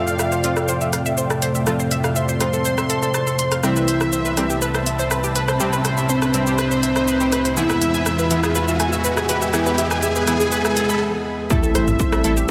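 A straight 4/4 groove at 122 BPM drives this cinematic, driving melodic techno excerpt, where an overdriven techno drum kit of smooth hats, rim click, shaker and toms carries a build-up over Fmaj7, Cmaj7 and E chords while a round, dark octave-layered synth lead with phaser and tape echo sings beneath a detuned supersaw, a warbling vintage pad under a filter sweep, bright chorused analog plucks, punchy brassy stabs, a very quiet evolving drone and an ethereal, airy background pad. A background riser climbs from 2.8 s to a brief break at 11.0 s, then the drop lands at 11.5 s on Am7 with an impact and a heavy up-front overdriven kick, joined at 11.8 s by a deep, nasal analog bass. Sidechain pumping moves the lead, supersaw, pads, plucks and stabs, and a huge ambient reverb washes over the mix.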